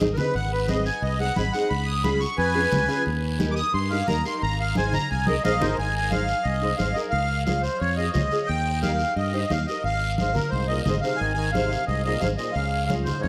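Cumbia in Ab major at a brisk 177 BPM, this sunny, festive excerpt opens with a sweet, reedy accordion taking a solo over the first 5.8 seconds, its light tremolo tuning and diffuse ambient delay keeping it up front. Underneath, a round, punchy fingered electric bass anchors the groove while fingerpicked nylon-string guitar with fresh strings and ensemble chorus adds accompaniment, thin-skinned congas sit in the background, and a raspy guiro scrapes along. A clear trombone with vibrato enters as a second line at 10.5 seconds, all floating in a dreamy plate-reverb haze.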